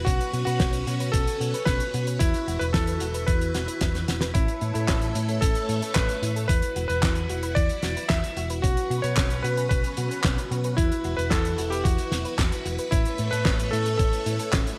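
Italo disco at 112 BPM with a nostalgic, melodramatic mood, where an up-front, clangy electric grand piano carries the melody through digital delay over lush, slow-attack string machine chords with ensemble chorus, a soft, detuned pluck arpeggiates in the background through chorus, cassette tape and delay, and a dark, round hollow-body bass anchors the low end, while a dry 70s kit of handclaps, hi-hat and fat snare with gated reverb plays a brief fill at 3.9 seconds beside an overdriven, thumpy electronic kick.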